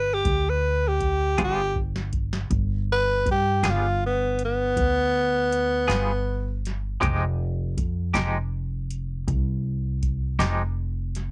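Slow blues in 12/8 at 53 BPM, mournful and brooding, cut from a longer piece, where a raspy, growling tenor saxophone carries the melody up front until 6.6 seconds over a woody, thumpy pizzicato upright bass, a soft vintage rhythm box with deep kick, crisp snare and metallic hats that plays a fill at 1.4 seconds and carries a cassette-tape grit, and a clean, picked semi-hollow electric guitar with tremolo, all in a light-reverb home cassette recording that moves from G to Fm9.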